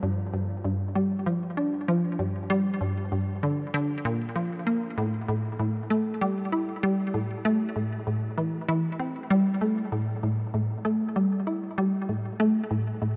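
Ambient excerpt, expansive and mysterious, featuring a lone resonant blip pluck, bright, squelchy and detuned with analog chorus and delay, sitting up front against a huge reverberant space across its 13.2 seconds.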